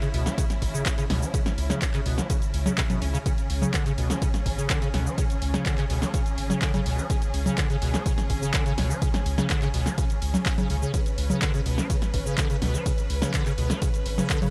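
A straight 4/4 pulse at 125 BPM drives this raw, gritty acid house excerpt in C# phrygian, where a dry, punchy electronic kick from 0.4 seconds sits up front beside a tape-warm analog drum machine of congas, handclaps, hi-hat, ride cymbal, shaker and snare, while a squelchy, resonant square-wave acid bass riff with filter sweep, chorus, analog delay and sidechain pumping rides over a deep, thick, tube-saturated sub bass, and a clear, bowed studio string section holds sustained, vibrato-laden chords that also pump, all in a dry, hardware-rough recording.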